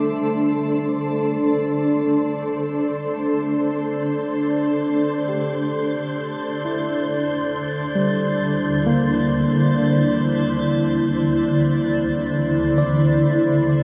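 Melancholic and reflective, this ambient passage in free time drifts through a vast, echoing cathedral-like space with a cassette-tape character, cut from a longer piece and moving from a D5 chord to Cadd9/D at 7.0 seconds. A cloudy, evolving granular pad sits up front with blurred, full-bodied sustained chords and shimmer reverb, while a worn, slightly out-of-tune tine electric piano fades in with lightly overdriven arpeggios through delay and shimmer. Behind them, a dark, breathy wind-like tuned noise texture also fades in, sustaining softly in the background throughout the 13.8 seconds.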